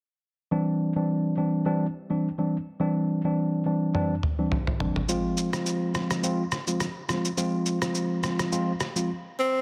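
Afrobeats with a joyful, romantic mood, opening on a worn, slightly out-of-tune tine electric piano moving from Cadd9 to Fm, joined at 3.9 seconds by a muffled, pitched-down, overdriven sampler-style drum kit whose fill of rim clicks, shaker and toms brings a trip hop grit, before a brief silent gap gives way to a whispered, breathy tenor saxophone touching a single intimate note at 9.4 seconds in this short cut from a longer piece, all set in light digital ambience under a dense, heavily limited modern master.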